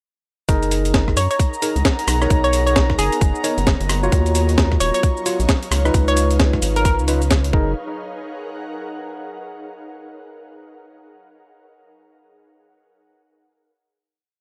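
A dry, gritty hardware recording carries this sunny, soulful two-step UK garage piece, where an overdriven four-on-the-floor electronic kick and a compressed sampler-style breakbeat kit with skipping swung hats, rims, shaker and a high-tuned snare sit alongside a rubbery, up-front square bass line, while a clean tine electric piano fires syncopated rootless chord stabs through analog delay, a hollow square pluck adds short answering phrases from 1.2 seconds, a smooth analog pad holds a high note in the background, and an ethereal airy pad drifts through slowly shifting chords into a final chord at 7.8 seconds.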